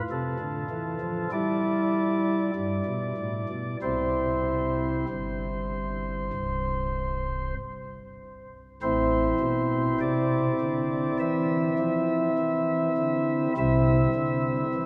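A classical, chorale-style excerpt for solo pipe organ, majestic and reverent, moves with a slow, rubato 4/4 pulse of about 47-51 BPM as soft, warm flute stops with a baroque voicing and tremulant sit up front across a span from C1 to E5, settling from C major into A minor at 8.8 s while a vast cathedral reverb with a 6.3-second decay lets every chord hang and echo.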